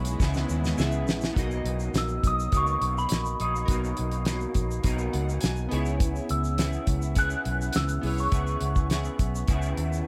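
Indie bedroom pop at 103 BPM in B major, laid-back and dreamy, where a mellow, bell-like glockenspiel with chorus and slapback echo carries the melody over glossy chorused retro synth keys with cassette-tape character and a fill near 4.8 seconds, a twangy, slightly broken-up guitar with warbly pitch drift, a shimmering pad heard only until 1.3 seconds, and a round, foam-muted bass and a dry, tight 70s drum kit opening with a fill, both up front, against a grainy egg shaker in the background and light reverb, moving from C#m7 to Bmaj7 and back.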